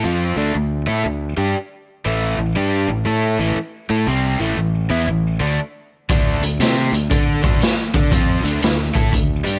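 Gritty and raunchy, this brief excerpt cut from a longer piece is blues rock in a power-trio, southern rock vein at 119 BPM in 4/4 with a swung eighth-note feel. An overdriven, double-tracked electric guitar picks a riff up front across the D5, A5 and D5 chords, joined by a growling fingered electric bass with its own overdrive, direct and amped. At 6.1 seconds a raw garage drum kit enters with hi-hat, a boomy kick and a medium-tuned snare, saturated and mid-forward with a rolled-off top, all set in a small room.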